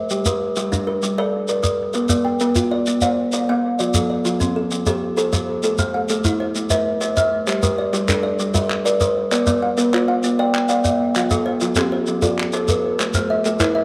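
Southern African traditional music in an mbira-style interlocking cycle, this hypnotic passage moves at 130 BPM in a straight 12/8, set in G equiheptatonic and cut from a longer piece. Two kalimbas carry the arpeggios across the whole span. The lead is woody, ringing and close-miked, sitting full and up front, while the second, quieter kalimba has a short, airy thumbnail pluck fed through tape echo. A grainy, mellow shekere sits close and dry beneath them. At 7.5 seconds a crisp group handclap enters, low in the mix, as the harmony cycles again through Gm, Bb, F and Am. An echo-chamber reverb of moderate depth, blended with a small room, gives the ensemble a warm glow.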